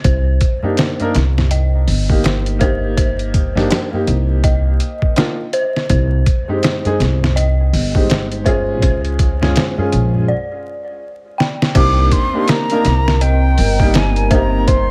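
Trip hop with a brooding, hypnotic pull, built on a gritty, pitched-down sampler drum kit and a woody, pizzicato upright bass up front, an eerie, inharmonic synth bell arpeggiating through chorus, phaser and tape echo, a clear upright piano with tremolo and 12-bit grit entering at 0.6 seconds alongside a low-tuned, dry tabla that drops out at 10.3 seconds for a break, then an airy jazz flute melody with vibrato arriving at 11.8 seconds, joined by a deep, detuned analog pad at 12.3 seconds, all wrapped in small-room ambience and vinyl crackle.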